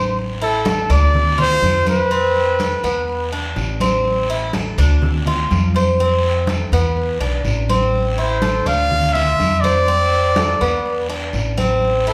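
A bright, metallic Cuban tres plays picked arpeggios over a woody, thumpy pizzicato upright bass, joined by ringing, soft-handed congas and a distant, raspy guiro in this nostalgic, sultry Cuban son and guajira piece, while an intimate, whispered trumpet with vibrato carries the melody up front from 0.4 to 3.3 seconds and again from 8.2 seconds, the band playing live together in one room bathed in wet large-studio reverb.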